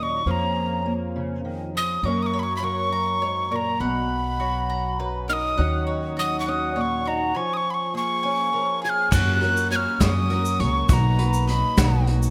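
In 6/8 at 68 BPM, this hopeful, uplifting indie folk piece in F# major opens with a breathy, mellow wooden whistle carrying the melody up front with vibrato and a chiffy attack, over a boxy fingerpicked archtop guitar treated with analog chorus and a thumpy pizzicato upright bass, while a picked mandolin with double strings adds arpeggios from 2.0 s. The arrangement builds at 9.1 s as a shimmering, octave-doubled twelve-string guitar, a vintage brush kit with dark cymbals and a tight kick, and a grainy, distant egg shaker join in, and the archtop drops out at 10.9 s. A lush hall reverb and bright 1980s-style digital production frame this short cut from a longer piece.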